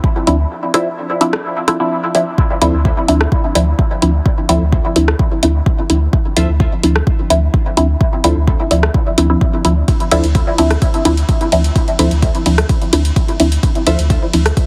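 A muted sawtooth dub chord stab sits up front in this hypnotic, meditative dub techno fragment, its filter sweeping under chorus, phaser, cassette tape coloring, dub echo and sidechain pumping, over a clean, dark sine sub bass that also pumps, a deep, overdriven kick, and an overdriven small-room deep house kit of hi-hat, ride cymbal and rim click, while a crisp, detuned, wave-folded wavetable stab pumps and echoes in the background, the mix heavily compressed like radio and briefly breaking from 0.5 to 2.4 seconds.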